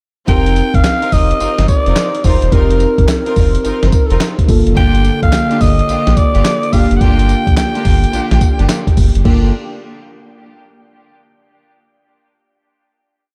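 From 0.3 s, a dusty, gritty sampler-style drum kit with a thumpy kick, clap-layered snare, hi-hat, tambourine and crash drives a bouncy, confident new jack swing groove at 107 BPM in G minor, under a deep analog bass line with muted ghost notes and chromatic approach notes, rootless electric piano chords in lush chorus, short syncopated studio string stabs and a raspy, breathy alto saxophone singing scooped, motif-based phrases through diffuse ambient delay, before the saxophone drops out and the band settles on a final chord at 9.3 s.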